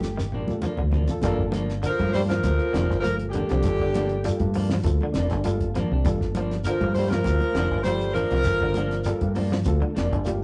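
A rough rehearsal-room sound with tube saturation, a dulled top end and moderate reverb frames this defiant, driving afrobeat cut from a longer piece, opening with a drum fill from the cloth-damped, thuddy kit with its fat snare and tight kick. A punchy, tight horn section carries the melody up front over a deep, round fingered dub bass, while a breathy, whispered tenor saxophone enters at 1.9 seconds with a second line. Around them sit clean stabs from a hollow-bodied semi-hollow guitar, twangy picked arpeggios from a slightly broken-up electric guitar, a reedy, worn, slightly out-of-tune electric piano with spring reverb that adds fills, and congas and a grainy shekere in the background.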